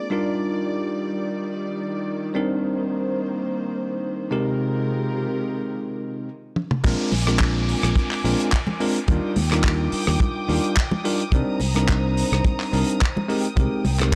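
A feel-good, sunny nu-disco excerpt with a gentle swing opens on a bright, bell-like tine electric piano with tape echo and a dark chamber string section pumping softly beneath, both under filter sweeps, until a drum fill at 6.6 seconds drops into a groove of up-front punchy fingered bass, a tight dry kick, a damped 70s kit with dark cymbals and handclaps, background congas and a faint downlifter, all through a gritty cassette-tape sound with light small-room reverb.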